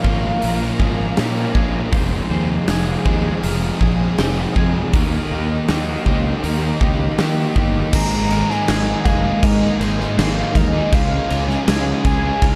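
A dark, reverb-soaked production frames this hazy, dreamy stretch of shoegaze and dream pop rock, where a huge arena drum kit with a fat snare, punchy kick and bright cymbals sits up front over a round, overdriven fuzz bass, thick fuzz and hollow-body overdriven guitars grind out riffs (the latter trailed by reverse reverb), a twangy, scooped clean guitar picks arpeggios in the background, a swirling, warbling string machine holds very quiet sustained chords, and a velvety synth lead with vibrato and analog delay sings its melody briefly at the start before returning at 7.9 seconds.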